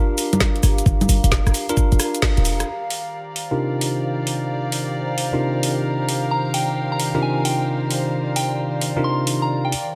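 Bell-like tine electric piano stabs, low-pass filtered and trailed by dub echo, ride over a nostalgic, lo-fi pad of detuned square and triangle tones that warbles with chorus and pumps against the beat to open this late-night, soulful UK garage excerpt. Moments later a swung two-step garage groove joins from a garage kit with a woody snare, metallic hats, rim click, cabasa and congas, along with a knocking electronic kick and a punchy, tight 808-style bass sitting up front for the first couple of seconds before a band accent at 2.2 seconds. From 2.7 seconds a reedy chamber violin section adds smooth, gut-string sustained chords, and at 6.3 seconds a soft, pure FM synth bell melody enters with chorus and echo, all set in a light reverb.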